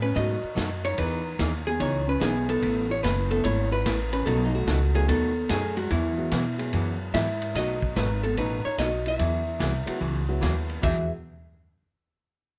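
A dark, clean hollow-body jazz guitar carries the melody in this cheerful western swing excerpt, its picked, compressed lines sitting over a 146 BPM groove in 4/4 with a swung eighth-note feel in E major. Close up front, a woody pizzicato upright bass with steel strings anchors the low end, while a soft, thick-felted upright piano plays an intimate second line beneath the tune. A miked and amplified archtop guitar adds clean, picked accompaniment from 0.1 s, and a vintage drum kit enters at 0.2 s with a punchy kick, medium-tuned snare, hi-hat, ride, toms and dark cymbals with a rolled-off top. A second, mellow upright piano sits in the background, entering at 2.2 s with audible action noise and a short sustain, then stepping away before returning near the close. The harmony moves between B7, Emaj7, Asus2 and Eadd9 chords, and light reverb gives the swinging ensemble a cozy studio-room feel.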